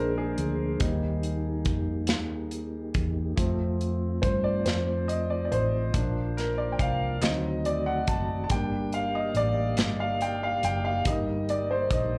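Slow gospel in a reverent yet jubilant 6/8 at 47 BPM, this excerpt from a longer piece features a woody, up-front upright piano taking the solo throughout, its smooth long sustain touched by slapback echo, over a flute-like tonewheel organ holding sustained chords with chorus vibrato, key click and slow rotary speaker. A dark, round hollow-body electric bass anchors the low end while an acoustic drum kit with a punchy kick, a medium-tuned snare and a rolled-off top enters at 0.4 seconds, and a crisp, very quiet group handclap joins from 7.2 to 10.2 seconds. Heard as a live gig through a club PA with light reverb, the harmony moves from Bb7 through Eb, F and Bb to D7b9, Gm and Eb/G.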